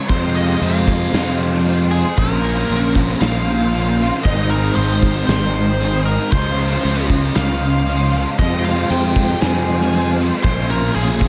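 A straight 4/4 pulse at 116 BPM drives this hazy, dreamy shoegaze and dream pop excerpt in F minor, cut from a longer piece and running through a chord cycle of Fm, Bbm, Ab, Dbmaj7 and Fmadd9. A loose indie drum kit of kick, snare and hi-hat enters at 0.1 seconds with a punchy kick, a medium-tuned snare and a rolled-off top, its pumping studio room giving the beat a soft breathing quality. Alongside it, a fuzz picked electric bass sits up front, thick and overdriven, anchoring the low end from Ab1 to F2. Two rhythm guitars carry the riff from the start: an overdriven semi-hollow guitar with a round hollow-body tone and ensemble chorus, and a bright, crunchy overdriven guitar tucked in the background, its reverse reverb adding a ghostly smear. Above them, a dark, nasal lead guitar with a parked wah and overdrive plays the melody between Ab4 and Ab5, trailed by tape echo. Plate reverb and small room ambience soak the whole mix in a dreamy wash.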